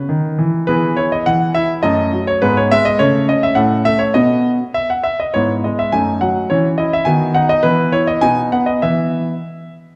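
In a 2/4 at 103 BPM with uneven, rubato-shaded beats, this playful, graceful classical-period sonatina in E major features a clear, polished concert grand piano playing solo and up front from 0.0 to 9.7 seconds, its deep bass and short sustain carried by a wet recital hall reverb as the harmony moves from B through E, A and C#m/E before settling on E5, in a short cut from a longer piece.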